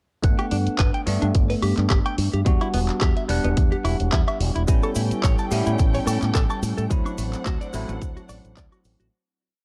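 A dark, cozy digital ambience wraps this short, sunny nu-disco piece at 108 BPM in G major, its swung sixteenths riding a punchy, up-front four-on-the-floor electronic kick and a pop kit of claps, hi-hats and woodblock over a Gmaj7, Em7, A7, D7 progression. A bright, octave-jumping fingered bass with an envelope filter drives underneath while a bell-like tine electric piano pumps rootless held chords with syncopated pushes through phaser and tape echo, and a clean, compressed direct electric guitar repeats a picked 16-step figure with subtle chorus. At 4.7 seconds a distant, woody violin section adds a lush bowed pad and a cabasa shakes quietly in the background, before the whole piece fades out from 6.2 seconds.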